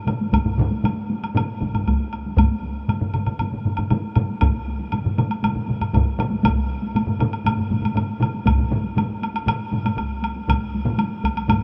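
A powerful, ceremonial passage of Japanese traditional taiko drumming opens at once, with several taiko ensemble parts and a woodblock sounding together from 0.1 seconds in this fragment cut from a longer piece. The tempo sits at 118 BPM in a straight 4/4 feel, and the whole passage holds to a single section of about 11.6 seconds. The drums are struck with hard sticks, one group with heavy sticks, and they are heard from different distances: one close, one in a live room, others in a small room, and one set further back in the background. The loudest taiko part joins at 0.3 seconds and carries through to 11.4 seconds. A woody, acoustic woodblock sits lower in the mix, beneath the drums. A huge ambient reverb with a long 7.3-second decay lends the performance a vast, hall-like weight.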